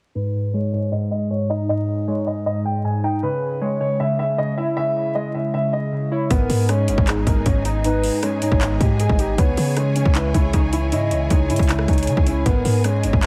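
This menacing, eerie trap piece begins with warbling, detuned lo-fi synth keys under a filter sweep, joined almost at once by a dark, boxy grand piano carrying the melody over a bed of vinyl crackle. At 6.3 s the half-time beat arrives: an up-front kit of hard-clipped kick, metallic hi-hats, handclaps and rim clicks, a deep, boomy 808-style bass, distant, woody strings holding lush sustained chords, and a hollow, clarinet-like synth lead with tape echo tucked in the background as a second line. The mix is dry, dense and heavily limited.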